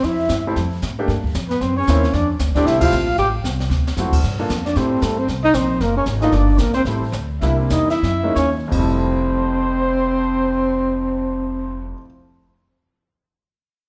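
Small-group swing jazz with a relaxed, warm mood, heard in a short cut from a longer piece. A dark, whispered tenor saxophone carries the melody up front with subtone and scooped notes, while a breathy trumpet with vibrato adds a second line above it, a growly, woody upright bass anchors the bottom, and a clear baby grand piano with audible action noise comps from 0.5 seconds. Brushed drums with dark cymbals and a boomy kick play until 9.0 seconds, with a band accent at 2.8 seconds, a drum fill at 3.7 seconds and a slowing down from 6.3 seconds, all in the moderate reverb of a recital hall.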